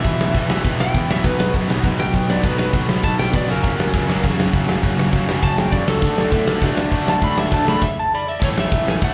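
A slightly broken-up lead guitar with a dark, compressed tone and slapback echo carries a solo melody through this upbeat, rowdy punk rock excerpt, cut from a longer piece. Behind it, two overdriven, picked electric guitars, one bright and one warm, play riffs with their own slapback echo, while a very quiet, double-tracked high-gain guitar adds a further distorted layer. A growly, fuzz-laden picked bass sits in the background, and an up-front acoustic drum kit with a fat snare, punchy kick, crash and ride sounds big, dark and warm, its top end rolled off. The drums play a fill at 3.5 seconds, and the band hits a stop at 7.8 seconds, where one of the overdriven guitars drops out, as the chords move from E through B, F# and D to A. The whole performance is heard through a club PA, with small-room ambience and venue reverb giving it a live-gig feel.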